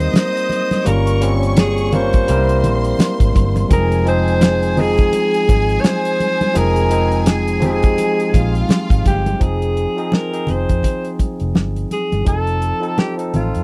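At 84 BPM in 4/4, a swung sixteenth-note groove from a fat-snared soul drum kit, a round, foam-muted fingered electric bass and damped, thick-skinned congas in the background carries this silky, bittersweet 1970s-style soul excerpt in F minor. A breathy, whispered alto saxophone with light vibrato sings the melody up front, over a barky tine electric piano and a lush bowed string section that adds a second line until 9.4 seconds. The close, dry studio sound frames every part as the harmony moves from Cm7 through Fm7 and arrives on F7 at 12.3 seconds.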